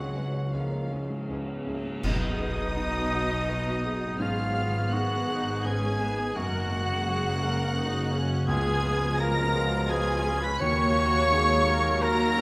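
A wet concert-hall reverb wraps this bittersweet, moving cinematic excerpt, a rubato film-score passage at 84 BPM in 3/4 built on chords moving from Db through B, Abm7, Gbadd9 and Db7 to Ebm7. A rich, smooth violin section with vibrato carries the melody over a bright clarinet, a dark French horn section holding sustained chords, ringing harp arpeggios, a mellow grand piano, a smooth viola section, and expressive cellos with distant double basses beneath, while a second, more focused violin section adds a background line. An airy flute enters at 2.0 s alongside a brief burst of dark clash cymbals and bass drum, and a clear, roomy oboe joins at 2.1 s as the music opens into its second section with a full-band accent.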